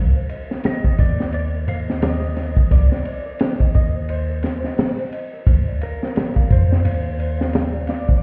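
A worn, slightly out-of-tune celesta with soft felt hammers opens this brooding trip hop excerpt at 87 BPM in C minor, its delicate arpeggios trailing tape echo over a deep, round 808-style bass that sits up front. A crunchy breakbeat kit enters at 0.3 s with a punchy kick, high-tuned snare, dark cymbals and a saturated, rolled-off top, swung on the 16ths beside a barely audible egg shaker, while from 0.7 s a clean lap steel guitar plays a slide melody with volume swells, roughened by 12-bit sampler grit and dub echo. The hypnotic groove moves from Cm7 to Dm7 at 5.5 s, and the mix sounds muffled, as if heard through a wall, inside a stone room reverb.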